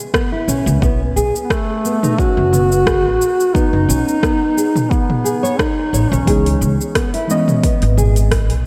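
A dreamy mix soaked in lush hall reverb, with a faint mains hum beneath it, frames this short organic downtempo passage at 88 BPM, its sixteenths lightly swung and its tuning set a touch low at A4 = 437 Hz. A dark, thumb-plucked nylon-string guitar plays classical arpeggios over C#m7 moving to B, dressed in subtle chorus and delay. Beneath it sit an overdriven electronic kick and a layered deep house kit of metallic hats, cabasa, rim click and toms. A woody, growly upright bass sits up front, its pizzicato notes pumping with sidechain. From 1.4 s a mellow duduk carries the hypnotic, mystical melody in folk style, with vibrato, scooped notes and delay. At 6.3 s, as the harmony returns to C#m7, a soft, evolving chord stab with a filter sweep, chorus and delay enters to close the passage.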